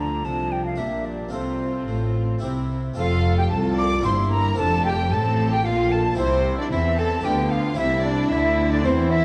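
In a straight 3/4 at 112 BPM, this festive, brilliant baroque-style concerto movement in F major sets a distant, airy silver flute and a dark, woody violin section on the melody over a smooth second violin line, a lush viola section and a brilliant French-style harpsichord in the background, with rich cellos and a focused, up-front double bass section anchoring the bass, all heard in a moderate concert hall reverb through a dark production, cut from a longer piece.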